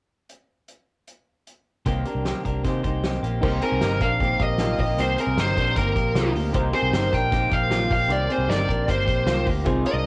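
A loose, roomy drum kit with a fat snare, punchy kick, hi-hat and crash drives this wistful, restless jangly indie pop at 154 BPM in a straight 4/4 feel, playing alone from 0.3 seconds until a round, foam-muted picked bass and two twangy background guitars, one clean and compressed, the other slightly broken-up through a small old amp playing arpeggios, arrive on a C minor seventh at 1.9 seconds. Soon after, very quiet detuned sawtooth keys with chorus and a filter sweep slip in, and at 3.6 seconds a dark, high-gain distorted lead guitar takes the melody up front with plate reverb, shadowed by an airy, bell-like glockenspiel line played with soft plastic mallets and treated with tape echo. The home cassette recording has a light reverb, and the passage is cut from a longer piece.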